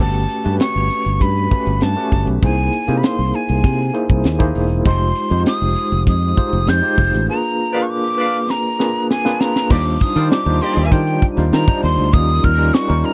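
This polished 1980s-style jazz-funk pop excerpt opens with breathy jazz flute carrying the melody high above a barky, overdriven tine electric piano whose medium tremolo and lush chorus give the chords a gritty shimmer. Underneath, a growly, punchy fingered electric bass and a tight funk drum kit with a high-tuned snare set a breezy, urban groove at 99 BPM in straight 4/4, in Eb major. The harmony moves through rich extended and altered chords, from Gmaj9#11 at the start to Ebmaj13 at 9.7 seconds. A band accent arrives at 7.3 seconds, and a drum fill runs from 8.5 to 9.7 seconds, leading into a new section. A clear, distant horn section with vibrato adds a second line between 7.7 and 10.9 seconds, sitting roomier than the rest. The flute's tape echo and chiffy attack stand out against a dry, close studio sound, with the drums and bass the most prominent parts.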